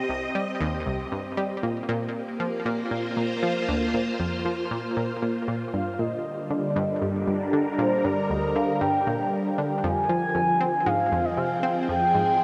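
A mellow, horn-like synth lead with a soft attack and gentle vibrato enters at 5.7 s over a swirling, phased string machine and a round, detuned analog pluck riff, all floating in a huge, wet reverb in this expansive, hypnotic piece of sequencer-driven space music at 117 BPM, moving from Cm through Gm7 to Fm.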